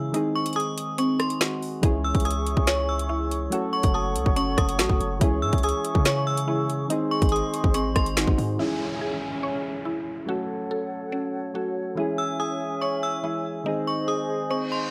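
An up-front drill drum kit leads this cold, dark hip hop excerpt, its hard-clipped kick, woody snare, metallic hats, rim clicks and finger snaps driving a half-time feel, with the kick held back at first. Beneath it, a punchy, heavy 808-style bass with a sine core and a noise layer hits hard and decays quickly; the drums drop out at 8.5 seconds and the bass at 8.6. A soft, round electric-piano-like synth plays gentle accompanying chords throughout, while a mallet-like synth pluck with a woody, percussive tone and a moving notch spins arpeggios through chorus, phaser and tape echo. High above, an inharmonic FM bell rings with a full-bodied, metallic shimmer, and a mellow flute section with vibrato and rolled-off highs enters at 1.8 seconds to hold sustained chords. In the closing stretch an electronic downlifter sinks under the remaining keys, flutes and pluck, and a reverse cymbal rises at 14.6 seconds, all in a dry, gritty digital space.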